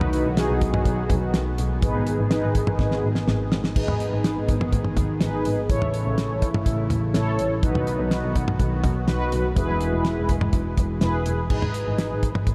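A driving, nocturnal synth-pop passage at 124 BPM in G# phrygian opens with a damped 70s drum kit, a bowed double bass, a mellow synth brass and a chorused pulse-width pad sounding together from the start. The dry, dark kit with its fat snare and tight kick sits up front and plays a fill at 2.8 s. The rich, nasal bass holds the low end, the round, brassy synth brass with chorus and a filter sweep carries the accompaniment, and the shimmering pad with tremolo and phaser holds sustained chords until 11.5 s, while a huge ambient reverb soaks the mix in a dreamy haze as the harmony moves through B, G#m, A, B and Eadd9 before returning to G#m.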